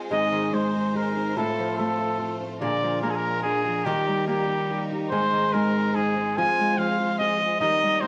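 A clear solo trumpet carries the melody up front, its classical-style vibrato carrying a distant, roomy quality over a festive, proud mariachi piece at 144 BPM in 3/4, set in Ab major. Beneath it, a Celtic harp spins mellow, fingerpicked, ringing arpeggios that stay prominent in the mix, while a dark, full-bodied nylon-string guitar supplies deep classical fingerpicked accompaniment. A focused, close studio violin section holds bowed sustained chords with its own vibrato, sitting quietest of the parts. The harmony moves through Ab, F over A, Bb7 and Eb before returning to Ab and touching Fm, and a wet spring reverb gives the recording a lively sheen. This straight-feel excerpt of Mexican folk runs about 8.1 seconds, cut from a longer piece.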